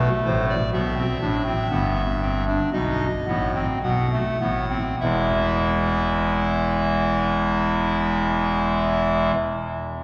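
A pipe organ speaking through a hollow clarinet reed stop carries this baroque-style three-part fugue, with a crisp chiff at the start of each note and a period voicing. The mood is solemn yet driving, in a straight four-beat metre. The organ is the only part, sitting up front in its own sound and spanning from the deep pedal register at E1 up to F#5. It rings out into a long, wet cathedral reverb, so the room places the listener further back in the space. The first five seconds slow down as the harmony moves from a rootless F#dim through Em and B7, before the second section arrives on E at 5.0 seconds and the organ stops at 9.3 seconds. This short passage is cut from a longer piece.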